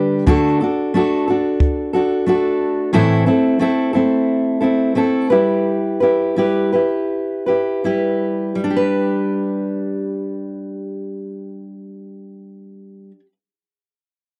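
Acoustic pop in G major with a carefree, sunny mood, cut from a longer piece, moving at 76-90 BPM in a straight 4/4, built on a dark, full-bodied fingerpicked steel-string acoustic guitar accompaniment placed up front, joined briefly by a punchy, smooth kick drum from 0.3 to 1.8 seconds. After an opening D chord, the tempo slows from 2.9 to 8.6 seconds through Am and Em/G before settling on G, all captured in a dry, close 1970s-style studio sound.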